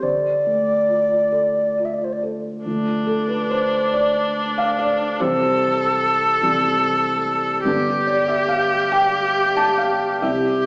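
Loosely rubato in 6/8, this mournful, haunting Celtic slow air, cut from a longer piece, opens with a mellow wooden baroque flute singing a brief, pure, vibrato-tinged melody with a crisp attack that stops at 2.2 seconds. A soft, dark felt-muted upright piano carries the accompaniment throughout, moving from D minor to C and then G, and at 2.7 seconds a clear, smooth bowed viola enters with an even second line. The recital hall reverb gives a church-like wash, though the overall sound is that of a small speaker.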